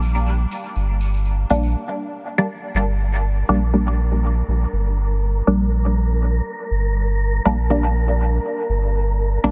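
A dense, heavily limited modern master with light digital ambience gives this dub techno excerpt a hazy, deep atmosphere in a swung 4/4 groove. A warm, round sine sub bass sits up front from the start and holds through the whole passage, while a jingly, bright acoustic tambourine, heard in a small room, plays only until 1.7 seconds. At 1.5 seconds a filtered dub chord stab arrives: muted, full-bodied detuned sawtooth with a quick filter pluck and short decay, thickened by a phaser, vintage 12-bit sampler grit and dub echo, giving it a dark presence up front. A brief break passes before the groove continues, and at 3.5 seconds an airy, breathy wind-like noise texture fades in slowly on a single sustained pitch, softened by its own built-in reverb. The whole excerpt rests on one minor chord, letting the bass, the echoing stabs and the drifting texture settle into a hazy, deep mood.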